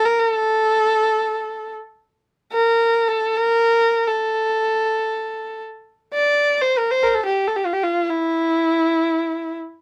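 Close, detailed microphones and light reverb frame this short cut from a longer Turkish makam ensemble piece in A makam kurdi, unfolding in free time with a melancholic, longing mood. A single bowed kamancheh plays solo and up front from 0.0 to 9.6 seconds, its warm tone smooth and even, shaded with vibrato and portamento across a range from E4 to D5.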